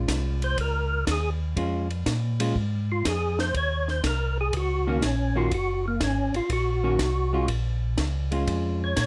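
This soul jazz organ trio piece opens with a hollow-body jazz guitar, clean and picked, comping in the background while a mellow tonewheel organ carries the bass line, its round, dark tone shaped by chorus vibrato and a slow rotary speaker. A compact cocktail drum kit joins at 0.1 seconds with dry, dark cymbals on hi-hat and ride, a high-tuned snare and a punchy kick, swinging the eighth notes at 122 BPM in 4/4. From 0.4 seconds a second, percussive tonewheel organ takes the melody as a solo, fat and lightly overdriven, with third-harmonic percussion, audible key click, chorus vibrato and a slow rotary speaker, sitting up front in the mix. The harmony sits in B-flat minor, moving from Bbm7 to Ebm7 and back to Bbm7, while a light reverb gives the soulful, late-night mood a touch of space. The guitar drops out at 8.9 seconds, just before this short cut from a longer piece ends.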